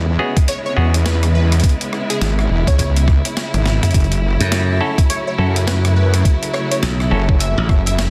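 A heavy, detuned wobble bass anchors this funky, swaggering glitch hop excerpt at 104 BPM in F# minor, swung on the 16ths, joined by a gritty, pitched-down boom bap kit with a high-tuned snare, a thumpy up-front electronic kick that drops out for a drum fill at 3.5 seconds, a catchy plucky unison lead with vibrato and tape echo, a rich bowed chamber string section pumping under sustained E6 and F#m7 chords, twangy clav stabs, and a growly slap bass entering at 4.4 seconds, all in a dry, dense, heavily limited mix.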